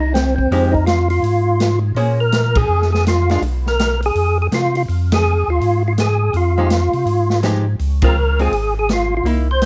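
A percussive tonewheel organ opens at once with the melody, fat and lightly overdriven, its key click and third-harmonic percussion riding a slow rotary speaker with chorus vibrato, while a second tonewheel organ supplies a piping, scooped bass line in the low register. This is a soulful, smoky soul jazz organ trio excerpt in F minor at 165 BPM, swinging in 4/4, cut from a longer piece. A swinging big-band drum kit joins at 0.1 seconds, its punchy kick, medium-tuned snare, hi-hat and ride captured with a natural studio-room sound. A dark, clean archtop guitar, picked and compressed with a hollow-body tone, comps from 0.5 to 3.4 seconds and returns at 6.6 seconds. The harmony moves from Fm7 through Bbm9 and Abm69/Cb back to Fm7 before settling on Dbmaj7, with the band hitting accents together along the way. Both organs sit up front in a close, detailed mix touched by light reverb.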